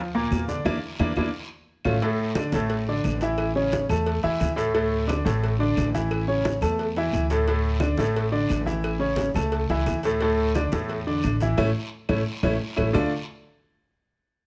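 Light reverb frames this short, danceable and passionate salsa cut at 176 BPM, where a clear, intimate grand piano with audible action noise and long sustain plays up front over a growly, thumpy pizzicato upright bass, joined by bright, low-tuned congas and woody claves in the background, very quiet round bongos and cowbell, and a raspy vintage guiro, with band accents arriving from 0.7 seconds and drum fills from 1.3 seconds, then both again at 11.6 seconds before a D5 chord lands at 13.0 seconds.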